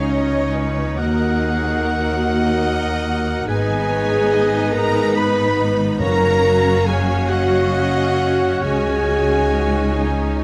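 A moderate scoring-stage reverb gives this short excerpt from a cinematic, emotional film score a sense of space, with a hopeful, uplifting mood in F# major. The music moves slowly at 47 BPM in a 6/8 lilt, its beats uneven and pulled with rubato. A soft-attacked solo French horn with light vibrato carries the melody alongside a close, focused studio violin section set in the background. A clear, present oboe, a pure straight-toned flute, a distant clarinet and a lush symphonic violin section weave second lines. Beneath them, an intense viola section accompanies, a dark, roomy horn section holds sustained chords, and a very quiet thumb-plucked harp rings out arpeggios. Cello and double bass sections anchor the bass throughout, and hard-malleted timpani sound briefly from 6.0 to 7.3 seconds as the harmony settles on F#maj7.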